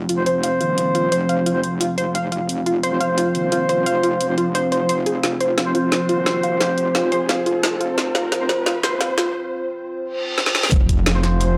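An excerpt of dark, futuristic technical drum and bass at 175 BPM opens on a deep, detuned analog pad holding F5-topped chords over a metallic, wobbling FM bass, both pumping with sidechain, as a warbling lo-fi pluck spins chorus-and-delay arpeggios, an overdriven kit with a woody snare and bright hats sits up front, mellow, distant brass stabs arrive at 0.2 seconds, a background riser and reverse cymbal rise from 3.3 seconds through a long filter-swept build-up with drum fills, and at 10.7 seconds a knocking overdriven kick and a very quiet, gritty, pitched-up breakbeat kit come in.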